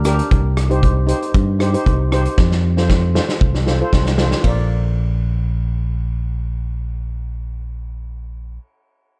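A fingered electric bass sits up front in this bouncy, carefree calypso excerpt, its direct tone moving through the low register from Bb1 to G2 at 116 BPM in a straight 4/4 feel. Alongside it, a cello-range steel pan struck with soft rubber sticks gives a mellow, shimmering metallic accompaniment between D4 and D5, sitting a little lower in the mix. A loose, roomy acoustic drum kit with a punchy kick and a medium-tuned snare, plus hi-hat, ride cymbal and rim clicks, plays from 0.1 s and delivers a fill from 2.4 s before dropping out at 4.6 s. The harmony moves from Cm to F and settles on Bb major at 4.4 s, where a new section begins, and shortly afterwards the bass and pan carry on together. The production is dark, with a small room ambience, and the tuning sits slightly below standard pitch at A4 = 437 Hz.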